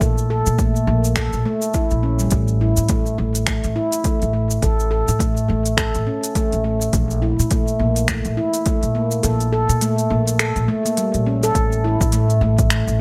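Set in light digital ambience, this earthy organic downtempo fragment at 104 BPM with a swung 16th-note feel has a ringing, meditative handpan, played with soft fingertips and touched with delay, spinning up-front arpeggios over a woody, dark pizzicato upright bass that pumps with sidechain, while a deep house kit of cabasa, finger snaps and smooth hi-hats rides beside a punchy electronic kick that drops out from 9.2 to 11.6 seconds, all moving between a Bbmaj7 colour and chordless stretches.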